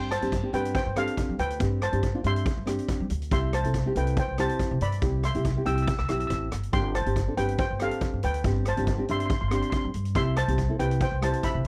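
A nylon-string guitar and an upright bass open this festive, bouncy calypso fragment, cut from a longer piece and moving at 140 BPM in a straight 4/4. The thumb-plucked classical guitar supplies warm accompaniment, while the pizzicato bass, woody and up front on steel strings, carries the low end. From 0.1 seconds a lead steel pan takes the melody, its metallic, shimmering tone struck with hard rubber sticks and sitting airy and forward in the mix. A street-band drum kit enters at the same moment, with hi-hat, rim click and a boomy kick, its warm, mid-forward sound sitting up front with a rolled-off top. The harmony rests on a Gsus4 chord before moving to C at 10.2 seconds. The sound is dry and intimate, a close 1970s-style studio recording with a small room ambience and a warm overall character.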